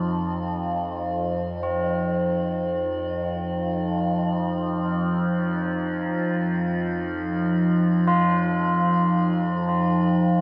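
A cavernous, unsettling wash of cathedral reverb, with a 6.0-second decay, surrounds this dark ambient drone, a short cut from a longer piece in free time. Up front sits a low drone spanning F2 to F3, its wave-folded, resonant tone full of moving overtones and a moving notch, entering with a slow attack and sustaining with a long release under chorus. Behind it, a quieter FM texture holds on Eb4, metallic and inharmonic, its eerie, warbling vintage character softened to a mellow glow by chorus and phaser. At 1.6 seconds tubular bells join, struck with a rawhide hammer and ringing in solemn arpeggios between C4 and F4, their mid-forward tone trailed by delay. Together the parts rest on a single F7 sonority with its third omitted, sustaining through to 10.4 seconds.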